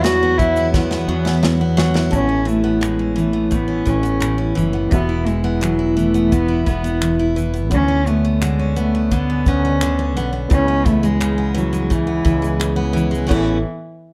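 A dark, lightly reverberant production frames this heartfelt, easy-going acoustic pop excerpt at 86 BPM in A major, where a close, reedy bowed cello carries the melody over a bright, up-front picked steel-string guitar with audible finger squeak, a very quiet, woody and slightly detuned upright piano, a direct fretless electric bass, and an airy country drum kit with punchy kick, snare, shaker, finger snaps and crash, whose fill from 0.7 to 2.1 seconds leads into chords moving from Aadd9 through Esus2, Bmadd9/D and C#m7.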